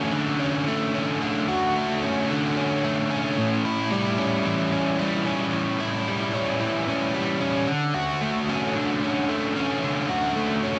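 Rock in D major at 112 BPM in a straight 4/4, this short excerpt has a dreamy, blissful mood. A lone overdriven electric guitar carries the whole passage from 0.0 to 10.8 seconds, picked and double-tracked, sitting up front with a dark, compressed tone. Subtle chorus and tape echo color the guitar, ranging from A2 to F#4. The harmony moves from Dmaj7 to A7 at 3.4 seconds and back to Dmaj7 at 7.7 seconds. A light reverb and digital ambience surround the sound, and the recording carries a dense, heavily limited modern master.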